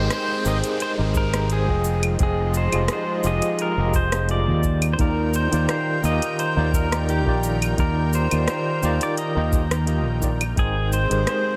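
A light reverb gives this short cut from a longer sunset chillout piece an airy, blissful and sunny glow, with a lazy swing on the sixteenths. A bright, twangy pedal steel guitar carries the melody, played with fingerpicks and slide, with volume swells and a delay trailing its clean, compressed tone. Beneath it, a gritty, barky tine electric piano runs through a combo amp with a medium tremolo, while a thick, detuned unison pad holds slow-attack sustained chords under a shimmering chorus. A punchy fingered electric bass sits up front, and a tape-warm R&B kit of metallic hi-hat, cabasa, claves and rim click ticks along before a deep analog electronic kick joins at 1.1 seconds. A background downlifter sweeps through the opening until 5.0 seconds as the harmony drifts from Abmaj9 through Fm7 to Ebmaj7 and back to Abmaj9.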